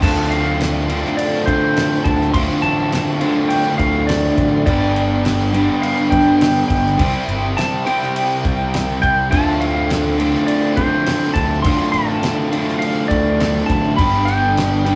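A damped 70s drum kit, with a fat snare, tight kick and crash cymbal, pushes a straight 4/4 groove in this brooding, driving classic rock excerpt. Beneath it, a growling fingered bass with overdrive sounds alongside a stack of picked guitar riffs: an up-front, compressed overdriven guitar, a dark double-tracked second one, and a very quiet, bright, tight distorted part. Over the Dm7, G and C changes, a clean, twangy lap steel carries the melody with slide and volume swells, while a tonewheel organ sits far back holding full sustained chords through a slow rotary speaker with chorus vibrato, all in a rough rehearsal-room sound with tube saturation, small-room ambience and moderate studio reverb.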